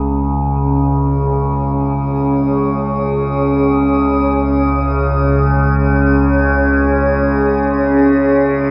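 An up-front, wave-folded drone with moving overtones and a phaser sweeps beneath a deep, detuned pad of sustained chords and a faint, metallic, inharmonic FM texture that warbles eerily, all three parts blooming slowly and hanging in a vast, echoing cathedral reverb to make this short dark ambient fragment feel desolate and unsettling.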